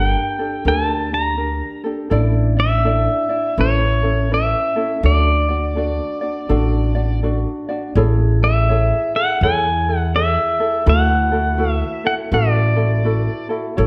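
This relaxed, languid Hawaiian piece, cut from a longer work, moves with a gentle swung lilt. An electric pedal steel guitar carries the melody up front, its tone bright, clean and twangy, played with fingerpicks and slide, compressed and shaped by volume swells. Beneath it, a light acoustic ukulele is thumb-plucked with a mellow touch. An upright bass, also up front, is played pizzicato on steel strings and gives a woody, warm low end. The harmony drifts through colored chords such as Gmadd9, Asus4 and Aadd9 before settling on D, then shifts at 8.0 s into a second passage built on Amaj7 and D69. A moderate recital-hall reverb surrounds the trio, and the steel guitar stops at 13.5 s while the ukulele and bass carry on to the close.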